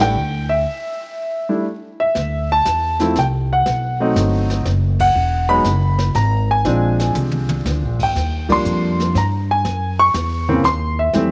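An intimate concert grand piano with audible action noise and deep bass carries the melody up front in this relaxed jazz piano trio excerpt at 120 BPM in a swung 3/4, joined from the start by a woody, warm pizzicato upright bass, while a softer brushed drum kit with a boomy kick enters at 2.2 seconds and the band hits accents at 4.9 and 8.4 seconds over shifting harmonies from Cadd9 through B7b9 and Ebmaj9 to F#7(no3), all set in light reverb and small room ambience.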